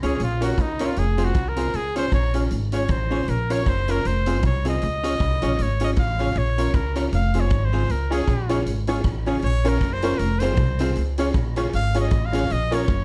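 A swinging ska beat at 156 BPM in 4/4 drives this bouncy, joyful excerpt in Db major, with a big-room drum kit of hi-hat, rim click and punchy kick beneath a thumpy, woody upright bass plucked up front. A brilliant, close-miked trumpet solos across the whole 13 seconds over a recurring Bbm–Fm–Db progression, while a dark, clean hollow-body archtop guitar accompanies, both carrying slapback echo. From 8.1 seconds a detuned, jangly honky-tonk piano adds short stabs with slapback echo in the background, all set in a dark production with light reverb.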